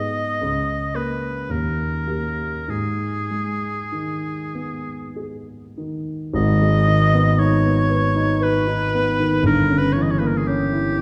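Classical romantic duo for oboe and grand piano in 3/4, played with a flexible rubato that gives this brief fragment of a longer piece a melancholic, yearning mood. The oboe carries the melody with a clear, lightly vibrato-touched classical tone, while the concert grand accompanies in a dark, mellow voice with deep bass and short sustain, both placed up front. A wet recital hall reverb sets the pair further back in the room, and the harmony shifts to a diminished colour at 9.5 seconds in the second section.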